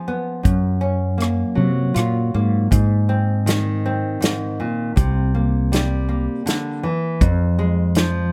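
Close, detailed and nearly dry, this reflective, melancholic folk-pop ballad in 3/4 opens on a woody, full-bodied nylon-string guitar, fingerpicked on old strings, before a natural country drum kit joins at 0.4 seconds with punchy kick, medium-tuned snare, rim click and hi-hat. A round, dark fretless electric bass sits up front from 0.5 seconds, while the harmony moves from Gbmaj7 to Ab as the piece shifts into a second section at 2.7 seconds, then on through C7 to Fm.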